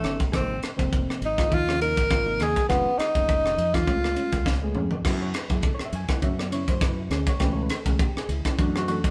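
A breathy, close-miked tenor saxophone leads this nocturnal, driving electric jazz fusion excerpt at 102 BPM in 4/4 with a swung sixteenth feel, its subtone melody carrying light vibrato up front until it stops at 4.8 s. A reedy, clean electric piano, heard through its built-in speakers and bathed in spring reverb, supplies the accompaniment, while a dark, compressed electric guitar adds fingered stabs in the background and a direct-sounding fretless bass plays alongside a tight funk drum kit with a high-tuned snare. After a drum fill from 4.5 s, the music moves into F# minor at 5.1 s, with the band playing live together in a stone room.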